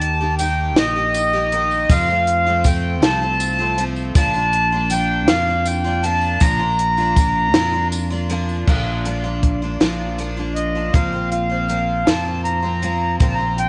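Anthemic and hopeful, this indie folk excerpt in 6/8 moves at a stately 53 BPM in Bb major, with a reedy, vintage accordion carrying the melody up front over a shimmering, octave-doubled twelve-string guitar that shows finger squeak, a round, punchy fingered electric bass, and a compact cocktail kit with a high-tuned snare, punchy kick, hi-hat and crash. A jingly tambourine sits in the background from 0.4 to 8.6 seconds, and at 8.7 seconds a woody, fingerpicked steel-string guitar with old strings joins softly behind the others as the arrangement builds. The chords move from Eb through F to Bb before settling on Bbsus2 at 10.9 seconds, all in a small room with light reverb and a slightly muted top end.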